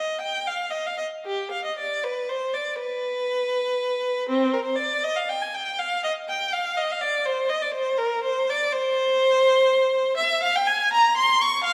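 A single bowed violin carries this solemn, introspective fragment of a baroque-style suite movement in C minor. Its tone is rich and focused, shaded with vibrato and placed up front, spanning C4 to Db6 across the full 11.7 seconds. The music moves in a flexible, rubato 12/8 at around 81 dotted-quarter beats per minute, tuned to A4 = 442 Hz. A moderate scoring-stage reverb with a 1.8-second decay gives the lone line a sense of space. Cut from a longer piece, the passage stays within one inward-looking section.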